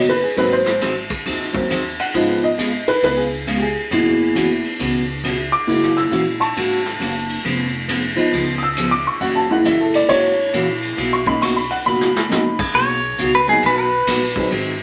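A clear, slightly detuned upright piano leads up front in this playful, swinging country and western swing excerpt in B major at 136 BPM, its worn, boxy tone and long sustain carrying the solo until 12.7 seconds. Underneath, a full-bodied picked dreadnought acoustic guitar, a woody pizzicato upright bass and a vintage brush kit with dark cymbals and a punchy kick keep the swing going, with a drum fill at 11.9 seconds. A bright, twangy pedal steel guitar then takes the solo, played with fingerpicks, slide and volume swells, and the recording sits in a small room reverb with vinyl crackle.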